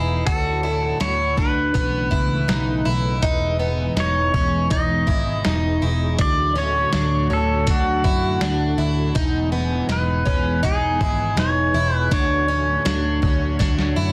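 Dense and heavily limited, this short cut from a longer dream pop piece sits in light reverb and digital ambience, with an ethereal, blissful mood at 81 BPM in a straight 4/4 in E major. Up front, a clean, twangy pedal steel guitar carries the melody with fingerpicks, slide and volume swells, its compressed tone trailed by delay. Beneath it, a vintage string machine cello patch holds sustained chords with a sawtooth body, sub octave, soft attack and long release, colored by phaser and ensemble chorus. A boxy, parlour-style plugged-in twelve-string acoustic guitar picks octave-doubled arpeggios that shimmer through lush chorus and delay, with a touch of finger squeak. A dark, foam-muted electric bass gives a round, punchy low end, while a lo-fi sampler-style drum kit enters at 0.3 s, pitched down and muffled, with a thumpy kick, medium-tuned snare and hi-hat, all overdriven and re-recorded in a small room. 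The harmony drifts between Dmaj7 and Emaj7, with a brief B9sus4 early on, and a drum fill at 13.6 s closes the passage.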